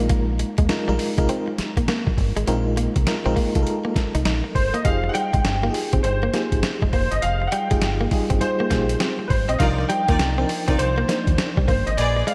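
A flirty, upbeat new jack swing groove at 101 BPM with swung 16ths opens on a mellow FM electric piano with tremolo, a clean, compressed electric guitar riff colored by tube saturation and subtle chorus, and a dark, round fingered bass, joined almost at once by a gritty, pitched-down sampler drum kit with a thumpy kick, gated reverb and an up-front placement. At 4.5 seconds an intimate concert grand piano carries the melody, its audible action noise and long sustain framed by an ensemble chorus, while the harmony moves from Bb7sus4 to Fm9 and then Cm11. Earthy bowed string stabs arrive at 9.6 seconds, and the whole excerpt sits in a lush hall reverb with bright 1980s-style digital production.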